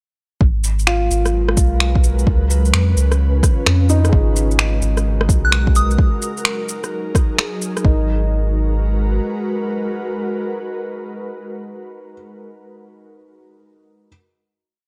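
This is a short, complete future garage piece in G# dorian at 129 BPM, with a swung, shuffled 4/4 feel and a ghostly, rainy mood. A muffled, overdriven two-step kick sits up front beside a skittering beat of shaker, finger snaps and rim click, while a round, soft sub bass carries long gliding notes through pumping sidechain and tube saturation. An ethereal, airy pad of detuned sawtooth and triangle tones, thickened with ensemble chorus and reverb, holds slowly shifting chords from 1.1 seconds, moving through G#m9, C#7 and F#69. A dark, woody upright piano scatters mellow notes with dub echo, and a soft, pure FM bell adds short answering phrases around 5.4 seconds. After the groove ends at 7.8 seconds, the piece settles onto a final G#m9 chord, with the piano lingering until 14.1 seconds in a dark, lightly reverberant mix.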